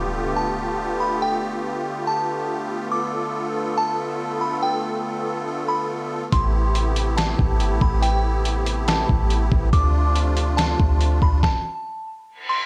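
An electronic impact opens this short cut from an atmospheric cloud-rap track, as a delicate, tinkling synth tine bell carries the melody over reedy musette accordion chords that pump against a sidechain. The FM bell is bright and chorused, softened by a low-pass filter and trailed by tape echo, while the accordion's wet tuning gives it a shimmering presence up front. At 6.3 seconds a deep, boomy 808-style bass and a gritty, pitched-down sampler-style drum kit arrive together, the kit's thumpy kick, medium-tuned snare and hi-hat overdriven and compressed in a half-time feel. The harmony moves from G9 through Am9 to Dm7, and the mood stays ethereal and spacious under light digital ambience. Bass, drums and accordion fall away by 11.5 seconds, leaving the bell to ring on until a reverse cymbal arrives at the very end.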